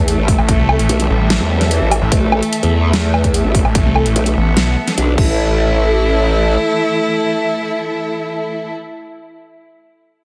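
The sound is heavily compressed and radio-like, with a light reverb, on this aggressive, chaotic stretch of heavy wobble dubstep cut from a longer piece, moving in a half-time feel at 147 BPM in 4/4 and tuned to A4 = 438 Hz. It opens on a drop, where a growling, wobbling growl bass with chorus and overdrive sits up front beside a snarling, detuned sawtooth bass with distortion and a moving notch, the saw bass dropping out at 4.8 seconds. A punchy, tape-warm electronic kick and a layered dubstep kit with a huge snare, metallic hats, crash cymbal and woodblock both carry studio reverb and stop at 5.3 seconds. Underneath, a warm, bowed string section holds sustained chords through a low-pass filter with sidechain pumping, while a clear, smooth cello sings the melody with vibrato through tape echo. A mellow brass ensemble adds classical-style stabs, also through tape echo, and after the growl bass ends at 6.6 seconds the strings, cello and brass carry the closing section to the end.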